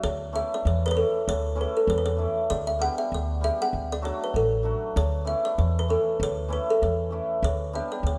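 A rough home-demo mix with a small room's light reverb frames this short, virtuosic and wild Balkan wedding-band folk cut in 2/4 with swung sixteenths. A bright, airy kalimba carries the melody up front, its hollow-box thumbnail plucks short and woody, while a shimmering, ringing cimbalom supplies warm, hammered accompaniment. A dark pizzicato upright bass with steel strings sits forward in the mix, holding the low end for the full 8.2 seconds.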